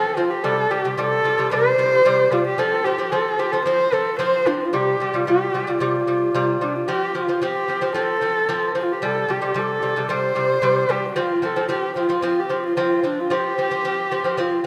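A straight 4/4 pulse at 112 BPM carries this vast, proud Mongolian folk passage in F gong mode, cut from a longer piece, with the harmony alternating between C5 and F5 every couple of seconds. Up front, a single dark, husky horsehead fiddle bows the melody between D4 and C5 with vibrato, soft attacks and expressive portamento, while a delicate fingerpicked lute with doubled gut strings plays arpeggios beneath it for the full 14.7 seconds. The whole sits in a wet scoring-stage reverb with a 1.7-second decay.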